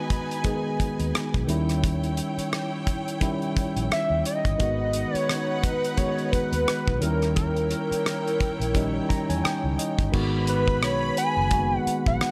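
A swung sixteenth-note feel from a damped, dry 70s drum kit with tight kick, dark cymbals, hi-hat, crash and rim click anchors this silky, cinematic fragment of lush 1970s-style soul, where a round, foam-muted fingered electric bass enters at 0.8 s beneath a clean, up-front tine electric piano and a woody, bowed string section with vibrato, before a hollow, nasal square lead with chorus takes the melody at 3.9 s and the piano adds a fill at 8.8 s, all set in light reverb and studio ambience.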